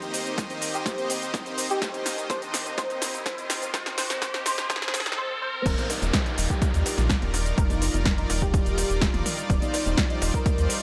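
A straight 4/4 pulse from a punchy, overdriven electronic kick drives this uplifting progressive house excerpt, with an up-front deep house kit of snare, metallic hi-hats, cabasa and crash cymbal running a drum fill through the build-up while a riser and downlifter sit in the background. A lush, airy supersaw pad holds sustained chords and a soft, detuned pluck plays arpeggios through chorus and digital delay, both pumping with sidechain. At the drop at 5.7 seconds, a round, deep analog bass and background electronic toms, congas and bongos join, giving the expansive mood its full weight.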